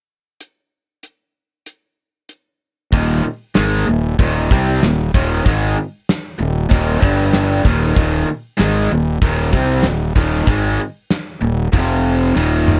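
Swaggering and sunny, this classic rock excerpt moves at 95 BPM in a straight 4/4 feel in Eb major, tuned slightly below standard pitch. A gated 80s drum kit opens alone at 0.4 seconds, its hi-hat, tight kick, medium-tuned snare and toms sounding airy and polished in a big, gated room. At 2.9 seconds a raw garage guitar and a fuzz fingered electric bass arrive together. The double-tracked, picked guitar carries the riff with a bright, overdriven edge, while the bass holds the low end with a round, fuzzy tone. The chords move from Eb5 to G5, back to Eb5 and on to F5, and a drum fill at 12.4 seconds closes the cut. All three parts sit up front in a dry mix with little reverb.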